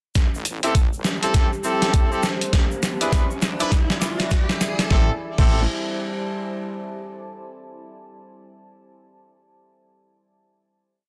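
A dense, heavily limited glitch hop miniature in A minor at 101 BPM with a 16th-note swing, swaggering and funky, where a gritty, thumpy electronic kick and a sampler-style kit of closed hats, snare and crash drive a swung, edited build and drum fill from 0.2 s to 4.9 s, a heavy detuned wobble bass with chorus and saturation sits in the background, a bright, grainy egg shaker ticks sixteenths, a clear jazz-style horn section fires tight syncopated stabs roughened by 12-bit sampler grit and digital delay, an electronic riser climbs in behind them, and a deep, moody pad with slow attack and built-in reverb carries the Am7 to E7 movement into a final Am7 chord that sustains to 7.2 s.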